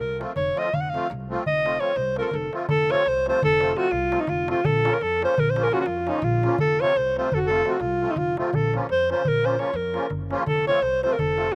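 This Balkan folk excerpt has the sound of a wedding band: restless and fiery, driving along in a lopsided 11/8 with a straight feel. A clear alto saxophone leads the melody up front, its classical-style tone smooth on top and shaded with vibrato, and it takes a solo through the opening 2.7 seconds before the tune moves into a new section. Beneath it, a musette accordion supplies reedy, shimmering accompaniment with a vintage, band-limited colour. An upright bass plucks a dark, woody, thumpy line on gut strings, while a small clay-shell darbuka with a natural skin adds high, soft-handed strokes heard close and dry. The harmony swings back and forth between F and B-flat minor, and the whole band sounds as if it is playing outdoors with little reverb.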